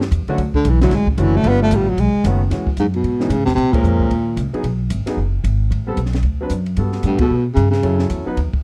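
Small-group swing and bop jazz at a brisk 225 BPM in 4/4 with a light swing, relaxed and warm in a dry, close 1970s-style studio sound, heard as a fragment cut from a longer piece. A breathy, whispered baritone saxophone carries the melody up front with light vibrato and a soft attack, dropping out at 4.5 seconds and returning at 7.1, while a woody pizzicato upright bass on steel strings and a clear grand piano with audible action noise move through extended jazz chords. A compact cocktail kit of hi-hat, ride, punchy kick and high-tuned snare, dark with a rolled-off top, keeps time, and the band hits an accent at 3.7 seconds.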